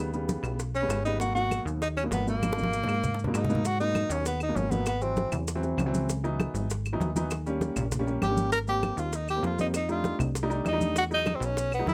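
A breathy, whispered tenor saxophone carries the solo melody up front in this fiery, sultry Afro-Cuban jazz excerpt in G# minor at 197 BPM, its vibrato and scooped notes falling silent at 5.3 seconds and returning at 8.2 seconds. Beneath it, a punchy, funky analog bass with a plucky filtered attack sits up front beside an intimate upright piano, whose woody tone, audible action noise and long sustain carry rich chords such as G#m9 and C#m11. Bright, soft-handed congas, tight high-tuned bongos and claves keep a close, dry pulse in the background alongside grainy, mellow maracas, a drum fill arrives at 2.4 seconds, and light reverb lends the ensemble a touch of space.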